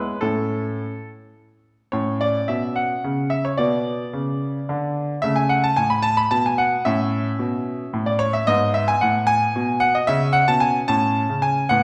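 A clear grand piano opens this short passage from a classical-period sonatina, sounding alone from the first moment in a graceful, elegant mood. The piece moves at 74 beats per minute, counted in dotted quarters, in a straight 6/8 lilt in A major, with the instrument tuned to A4 = 438 Hz. The piano sits present and up front, spanning G#2 to B5, while a wet recital hall reverb with a 1.5-second decay surrounds it with the air of a church or concert hall. A brief opening phrase settles on A major before a second, longer section begins at 1.9 s, colouring the harmony with B minor add9, a return to A, then G# minor seventh. Near the close, a B13sus4 gives way to an Amaj7 at 10.9 s, and the fragment ends at 11.8 s as it is cut from the longer work.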